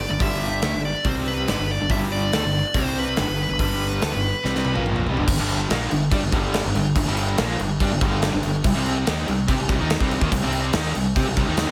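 A dark, smooth lead guitar sings up front over three stacked riff guitars: a biting overdriven one with tremolo sitting in the background, a very quiet hollow-bodied semi-hollow, and a bright, tight, double-tracked distorted guitar. A growly, punchy fuzz bass, fingered and overdriven, plays alongside them from the start on G5 and C5 power chords in this anthemic, powerful hard rock excerpt at 142 BPM in a straight 4/4. From 0.2 seconds a gated 80s drum kit hits up front with a punchy kick, medium-tuned snare, bright cymbals, hi-hat, toms and a stony gated room sound. A drum fill from 4.4 seconds leads into the next section, and the lead drops out midway through it at 4.8, leaving the guitars, bass and drums to drive on in a small room with light reverb.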